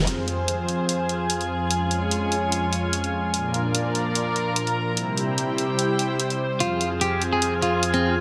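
Set in a lush hall reverb, this aggressive, chaotic fragment of heavy wobble dubstep runs at 147 BPM in a half-time 4/4 with a light sixteenth-note swing, moving through Fm, Db/F, Bb and C in F harmonic minor. A thick, detuned sawtooth-and-square unison pad with chorus holds sustained chords throughout, paired with a distant, reedy string section bowing in a dark, gut-string period style, while an up-front, layered electronic hi-hat drives the groove. At 6.6 seconds a bright, compressed clean electric guitar enters with a short picked melody trailed by delay.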